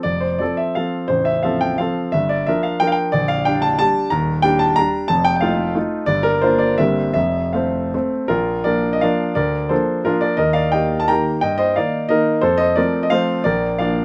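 Classical romantic dance in triple time, graceful and rustic, taken from a longer piece and played with rubato and dotted rhythms on a solo grand piano. The piano sounds smooth and vintage, sitting up front in a light reverb as it spans from its deepest bass to the upper middle register. Its harmony moves through Gm7, Ebmaj7 and C7/G before a new section at 8.3 s settles on Bb, closing on that chord at 13.5 s.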